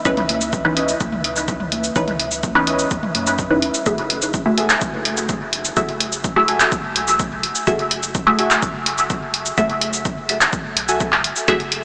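A dreamy mix soaked in a huge ambient reverb, with a small-speaker quality, gives this short cut from a longer dub techno piece a hazy, cavernous mood. It runs at 126 BPM in a straight 4/4 in F# minor, moving from C#m9 to F#m9 at 3.9 seconds. Up front, a muted, detuned chord stab with a filter pluck and a phaser pumps against the beat and trails dub echo. It sits over a deep, round sine sub bass in the background and a punchy analog kick. A forward analog drum machine adds handclaps, hi-hat and shaker with their own echoes, while layered, overdriven electronic toms and congas sound briefly until 3.2 seconds. Warbling, nostalgic lo-fi synth keys carry a chorused riff with a filter sweep, and an airy, breathy wind-like noise texture hangs in the haze until 3.9 seconds.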